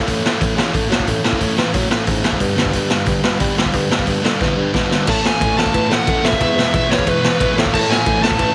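A raw, up-front garage drum kit with a punchy kick and saturated, gritty crunch drives this rowdy, rebellious punk rock excerpt at 180 BPM, with two sludgy overdriven guitars picking riffs in the background over a dark, distant bassoon bass line, a drum fill at 4.4 s leading into a dark high-gain lead guitar melody and a very quiet, bright double-tracked guitar riff from 5.1 s, all in a dry, heavily compressed radio sound.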